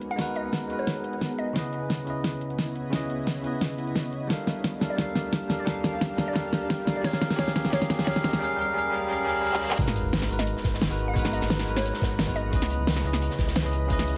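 Bathed in a moderate plate reverb and digital ambience, this soulful, lush liquid drum and bass excerpt opens with an up-front, bell-like tine electric piano carrying vintage 12-bit sampler grit and digital delay over a shimmering, ethereal pad whose filter sweeps through the build-up, while a glassy wavetable pluck with chorus and dub echo flickers in the background. A layered pop drum kit with fat snare, crisp hats and handclaps drives alongside a knocking, tape-warm electronic kick, and drum fills plus a very quiet riser, reverse cymbal and sub drop lead into the drop at 9.8 s. There a deep sine sub bass with octave arrives together with a saturated, gritty breakbeat kit with a rolled-off top sitting behind the mix.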